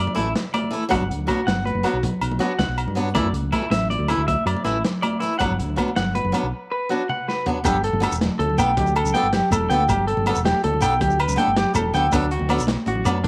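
The rhythm rolls in a straight 12/8 at 107 beats per minute, counted in dotted quarters, giving this warm, danceable highlife guitar band excerpt its lilting pulse. An electric guitar through a small old amp spins bright, twangy arpeggios from D4 to G5, slightly broken-up and touched with tape echo, while a round, punchy fingered electric bass holds the low end from E1 to G2. A boxy picked acoustic guitar with fresh strings and audible finger squeak adds swing-style accompaniment, and thick-skinned, high-tuned congas played with soft hands sit alongside ringing, dry agogo bells. A crunchy breakbeat drum kit, gritty and saturated with a rolled-off top, a tight kick and a medium-tuned snare, drives underneath, and a grainy, mellow shekere joins at 7.7 seconds. Chords move between Dsus2 and Gmaj7 before shifting to Gadd9 and closing on D6, with a break from 6.5 seconds and a drum fill leading into the second section at 7.6 seconds, all set in light reverb and small room ambience.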